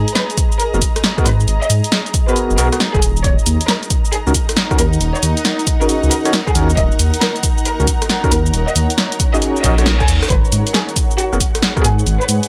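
A dry, gritty hardware recording with digital ambience frames this skippy, soulful two-step UK garage excerpt in G# minor at 136 BPM, swung on the 16ths: a dark, rumbling detuned saw bass sits up front beneath a punchy analog kick and a drum machine's snare, hi-hat, rim click and shaker, both re-recorded in a small room, while a barky, overdriven tine electric piano with fast tremolo through a combo amp plays stabs over G#m9 and D#m7 chords, a lush, distant bowed violin section carries the melody, an ethereal, airy pad in the background and a cloudy, evolving granular pad both carry built-in reverb and pump with sidechain, and a reverse cymbal at 9.6 seconds leads into a drum fill and the G#m7 chord at 10.3 seconds.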